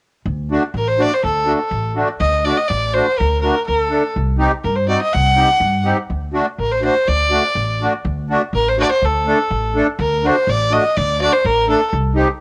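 A straight two-beat pulse carries this bittersweet, festive klezmer fragment of a longer piece, where a clear, nasal violin with light vibrato and an airy bow sings the melody through a cassette-tape tint over a reedy, sweet accordion with light tremolo tuning and a woody, growly pizzicato upright bass, all three up front in a small room with light reverb on a homemade cassette recording.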